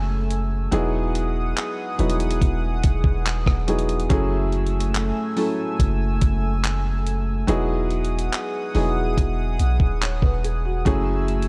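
Smooth and dreamy, this short contemporary R&B excerpt moves at an unhurried straight pulse in 4/4, cut from a longer piece. A felt-muted upright piano carries the accompaniment up front, soft and intimate with its action noise audible, while a chorused pulse-width pad holds sustained chords behind it with a shimmering, retro, detuned glow. Underneath, a long 808-style bass sits deep and mellow, its sine tone striking quickly and then decaying. A dusty sampler-style drum kit enters at 0.3 seconds with a thumpy kick, rim click, hi-hat and handclaps, its compressed sound roughened by vintage 12-bit grit. The harmony sways between F#m9 and Emaj9, and the dark production keeps the room dry and close.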